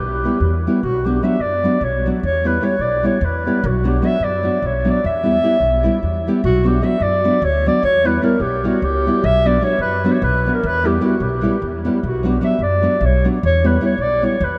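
An immense, echoing reverb washes over this brief cut from a Balkan wedding-band folk tune in E minor, where a mellow, distant classical-style clarinet carries the bittersweet, restless melody up front over a warm, thumb-plucked nylon-string guitar and a woody, thumpy pizzicato upright bass, all pulsing in a straight 7/8 at 300 BPM in eighths as the harmony sways between Em and Bm.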